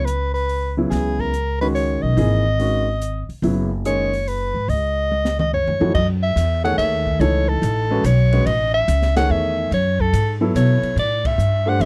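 Cool and hypnotic, this swinging modal jazz waltz, cut from a longer piece, sets a mellow soprano saxophone melody with light vibrato and scooped notes up front over warm vintage grand piano accompaniment, a woody, growly pizzicato upright bass and a small-room drum kit with dark cymbals, a high-tuned snare and boomy kick, whose fill at 5.1 seconds leads into the second section before a band accent at 11.2 seconds, all captured in a dry, close 1970s-style studio sound.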